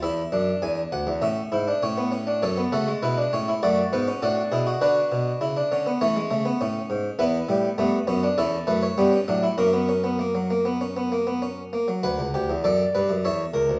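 In a straight 4/4 at 100 BPM, this serious, solemn baroque-style four-part fugue for solo harpsichord is cut from a longer piece, moving through E7, A and F#m before settling into B minor from 7.2 s. The French-style harpsichord, plucked on one set of strings and sitting up front, has a round tone spanning C#2 to G#5. A wet stone room reverb adds a resonant sense of space, and the opening idea returns at 12.0 s over Bm and A#dim.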